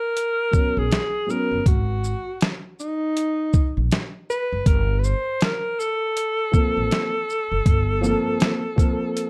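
A dark, smoky production with moderate studio reverb sets a nocturnal mood for this jazz-hop excerpt at 80 BPM, swung on the sixteenths and moving from G#m11 to Gm11 at 4.7 seconds. A forceful alto saxophone with vibrato and plate reverb carries the solo melody from the first moment. Beneath it sit a gritty, pitched-down boom bap kit with a thumpy kick, medium-tuned snare, hi-hat and shaker, and a woody pizzicato upright bass, while a mellow concert grand piano with audible action noise and plate reverb adds brief accompaniment early on and returns at 6.5 seconds.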